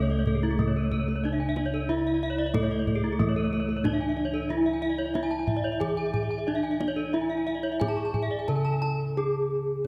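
Brilliant and shimmering, this Balinese gamelan passage in straight 4/4 sets an up-front bronze metallophone melody, struck with a wooden mallet and ringing with the beating shimmer of paired tuning, over round, mellow bossed gongs played with padded beaters in the bass. Two more horn-mallet metallophones weave arpeggios above, one boxy and warm in the upper register, the other bright and airy, dropping out at 8.9 seconds. A tight, close kendang played with soft hands joins at 0.1 seconds and closes with a drum fill from 9.2 seconds, the ensemble sitting in a moderate concert hall reverb in this excerpt from a longer piece.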